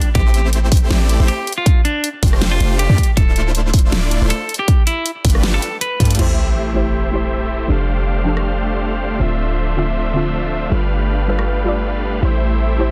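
Over a swung, half-time 4/4 groove of punchy up-front electronic kick and a dubstep kit with a huge snare, hi-hat, rim click and crash, this bittersweet, dreamy future bass fragment pairs lush, detuned supersaw chords and a deep, boomy 808-style bass, all pumping to the sidechain, with a bright, twangy clean electric guitar melody through digital delay until about 6.1 seconds. Then a very quiet sub drop lands at 6.2 seconds, and a soft, round, chorused pluck with cassette-tape colour and dub echo enters together with a faint, reedy chamber string section for the dense, heavily limited remainder.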